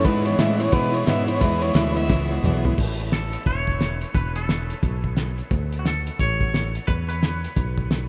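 Easygoing and down-home, this honky-tonk and classic country excerpt swings along at 175 BPM in 4/4, opening with a dark, nasal fiddle line, bright picked steel-string acoustic guitar and a hollow clarinet-stop pipe organ with chiff and tremulant sitting in the background, all three dropping out by 2.8 seconds during a drum fill that begins at 2.1 seconds. A growly, punchy fingered electric bass and a muffled, cloth-damped drum kit with a fat snare and gritty, saturated tone stay up front throughout as the chords move from E to A, Esus4, D5 and E5. From 3.1 seconds a twangy, clean electric guitar carries the melody through lush chorus, and the whole piece rings out in a vast, echoing space with a huge ambient reverb.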